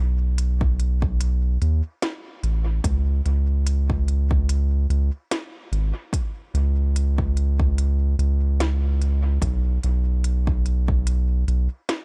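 Deep and hazy, this ambient dub excerpt moves at 73 BPM in 4/4 with a 16th-note swing, carried by a soft, round sub bass with a tube-saturated edge sitting up front from the start, an overdriven, layered electronic kick entering at 0.6 seconds with a touch of small room reverb, and a quieter electronic drum kit of woody snare and smooth hi-hats washed in dub echo.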